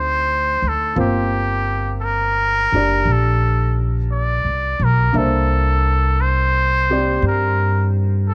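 This is a jazz ballad, romantic and tender, moving at a slow 58 BPM in 4/4 with a gentle swing on the eighth notes. A trumpet with a straight mute carries the melody up front, its nasal, bright tone shaped by vibrato and scooped notes in a soloistic jazz style. A baby grand piano sits further back with warm accompaniment. An upright bass, played pizzicato, gives a woody, thumpy low end that stays close and present. The harmony moves from D7b9 to Gm7 at 1.0 seconds and on to C13 at 5.1 seconds, all within a small, intimate room reverb. The 8.3-second fragment is cut from a longer piece, and all three instruments play throughout.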